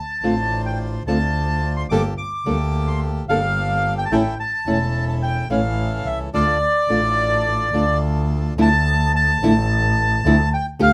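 A rubato 4/4 pulse at 108 BPM carries this sultry, passionate tango in D minor, where an airy, reedy bandoneon sings the up-front melody from the start over fingerpicked nylon-string guitar and a boxy, bowed double bass with vibrato, while a second, darker bandoneon adds close-miked stabs with slapback echo until 8.5 seconds, inside a moderate club room as the Dm7, Gmadd9, A and Dm chords give way to a bare D5.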